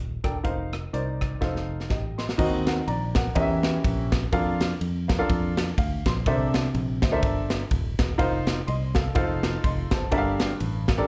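A crisp, up-front fusion drum kit drives this uptempo gospel excerpt at 124 BPM in 4/4, swinging its eighths with a punchy kick, a medium-tuned snare, rim clicks, hi-hat, ride and crash, and a fill from 1.4 to 2.4 seconds leads into the second section. A warm baby grand piano sits up front as well, natural in tone and touched with slapback echo, spanning G2 to C6 and stepping forward with a fill from 5.5 to 6.3 seconds. Underneath, a fingered electric bass sounds bright, direct and foam-muted, with a punchy low end reaching down to Eb1. The harmony moves through rich, churchy colours such as F7sus4, Ebm6, Edim7, Bbmaj7/F and C13 before settling on Gm9. Heard as a live gig through the venue's PA with a touch of club reverb, the music feels reverent yet uplifting, and it is cut from a longer piece.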